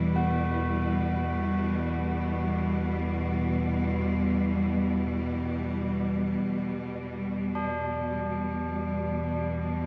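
In free time, this ominous dark ambient drone fragment in E minor rests on a deep, rumbling, detuned synth drone while a bright, lush studio cello section holds sustained vibrato chords up front, metallic tubular bells ring out solemn arpeggios through a diffuse ambient delay, and a bubbling, resonant stepped-filter texture with chorus murmurs in the background until 6.4 seconds, the whole sound bathed in a wet cathedral reverb.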